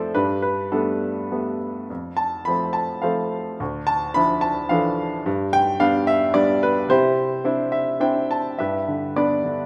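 A baby grand piano sits up front in a moderate scoring-stage reverb, its tone clear and natural with a short sustain that lets each chord ring briefly before the room's 1.8-second tail takes over. This is a lyrical classical solo piano piece in 3/4, moving at roughly 100-112 BPM with a rubato feel and a relaxed, hopeful mood, tuned to A4 = 439 Hz. The harmony moves through Gadd9, F, Dmadd9, G and Cadd9, spanning from D2 up to B5 across the keyboard. Near the close of the opening passage, a piano fill arrives at 7.4 seconds. At 8.6 seconds it gives way to a new section resting on G. The whole recording is a brief passage cut from a longer piece, lasting under ten seconds.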